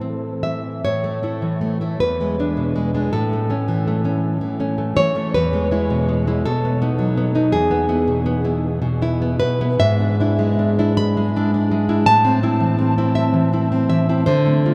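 Rubato in 6/8 at 54 BPM in dotted quarters, the beats stretch and push unevenly through this passionate, melancholic romantic excerpt for solo classical guitar. The fingerpicked nylon-string guitar sounds dark and full-bodied, placed up front and ranging from E2 to B5. A huge, wet reverb of about 8.0 seconds surrounds it like a vast echoing space. The harmony moves through A major before darkening into A minor from 9.8 s, and the passage is cut from a longer piece at 14.7 s.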